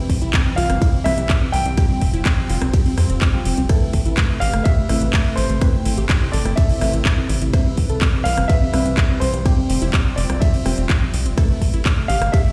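A smooth, detuned sawtooth pad, a lush unison pluck playing arpeggios and a dark, deep chord stab open this bittersweet, dreamy progressive house excerpt together at 0.0 seconds. All three sit in the background under sidechain pumping, with chorus on the pad and stab and digital delay on the pluck and stab. A punchy electronic kick sits up front at 125 BPM in a straight 4/4, joined by a house kit of handclaps, metallic hi-hat, ride cymbal and rim click, both drum parts layered and tape-warmed with a small-room character. A tight, driving sequencer bass, sawtooth and square with a fast-attack filter pluck, pushes forward in the low register and pumps against the kick. From 0.6 seconds an intimate grand piano carries the melody with audible action noise, short sustain and tape echo, shadowed very quietly by a soft, pure FM bell on a second line. The harmony moves through Cmaj7, Fsus2 and Amadd9 in A minor, and the whole mix sits inside a large studio reverb that sounds like a big system playing in a bare room.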